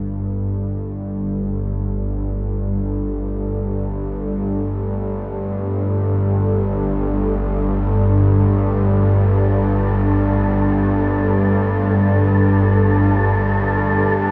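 Dark ambient drone in free time, ominous and unsettling, cut from a longer piece and resting on a Gsus2 chord, with tuning at A4 = 441 Hz. A tense, nasal bowed-like drone sits up front in the low register, while a deep, moody pad with chorus fades in behind it across the full 14.3 seconds and a filter sweep moves over the drone. From 9.0 seconds an airy, breathy wind-like tuned noise texture joins, all within a huge, wet reverb and the soft grain of cassette tape.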